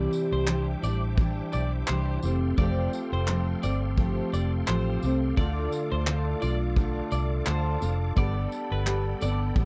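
A gently swung sixteenth-note groove in 4/4 carries this easy-going, heartfelt acoustic pop fragment, where an unplugged drum kit with a punchy kick, bundle sticks, handclaps and tambourine sits up front beside a dark, round, foam-muted electric bass. A double-tracked, full-bodied jumbo acoustic guitar fingerpicks the accompaniment through Cadd9, Fadd9, Dm and Gadd9, while a twangy, compressed twelve-string electric guitar plays lush-chorused arpeggios until 9.4 seconds. High above, a reedy tonewheel organ holds sustained chords with key click, chorus vibrato and a fast rotary speaker, all in a dry, close 1970s-style studio sound.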